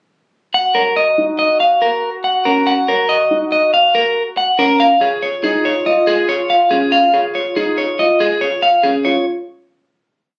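A hypnotic, propulsive minimalist classical piece in 5/4 opens with a bright, twangy electric guitar at the edge of break-up picking a repeated melodic cell up front, alongside a distant, mellow soprano saxophone holding swelling vibrato notes in the background, while from 0.8 s a dark, boxy concert grand piano adds long-sustained arpeggios over deep bass as Ebm7 gives way to Db before a final chord at 9.1 s, all captured on a phone in a room with club reverb and compression.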